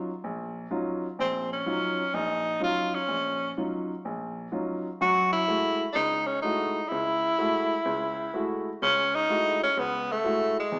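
A clear tenor saxophone carries the melody up front, entering at 1.2 seconds with a light vibrato and a smooth top as it plays a solo line in jazz style. Underneath, a warm baby grand piano provides accompaniment from the start, its natural tone sitting close and present. This is a swinging jazz piece at 126 BPM in 4/4, with a searching, hypnotic mood. The harmony moves from Ebm9 to Gbm9 at 5.0 seconds over the course of the short passage. A wet recital hall reverb surrounds the sound, suggesting a church or concert hall, though the overall result has a small speaker character. The recording is a brief cut from a longer performance.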